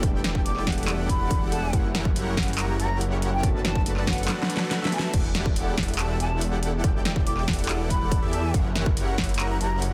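Future bass in a half-time feel, this lush, dreamy excerpt drops straight in with a punchy electronic kick and an up-front dubstep kit of huge snare, metallic hats, handclaps and crash, under a thick, saturated detuned saw bass and a dense, compressed supersaw riff with vibrato and a sub octave. Behind them sit a soft felt-muted upright piano, its action noise audible through tape echo, which stops at 5.2 seconds, and an airy, dark arpeggiated lead with chorus, while a breathy, hollow jazz flute carries the melody from a distance through dub echo from 0.5 seconds. Sidechain pumping runs through the piano, lead, supersaw, bass and flute over lush extended chords, a drum fill arrives at 4.3 seconds before the second pass, and the whole is a dense, heavily limited modern master in digital ambience.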